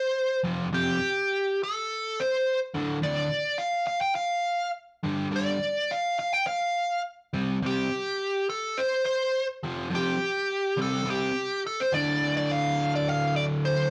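A nasal lead guitar with a parked wah opens this menacing, driving rock fragment, playing an overdriven, picked melody in a high register. At 0.4 seconds an overdriven electric guitar joins beneath it with a low, double-tracked riff, and both guitars sit up front in the mix. The straight, steady four-beat feel carries the music through a progression that moves from F and D minor into a run of power chords. A brief new passage begins at 11.9 seconds on a D power chord, and the piece runs until 13.9 seconds. The sound is rough and saturated, like a rehearsal room, wrapped in a short, wet studio reverb.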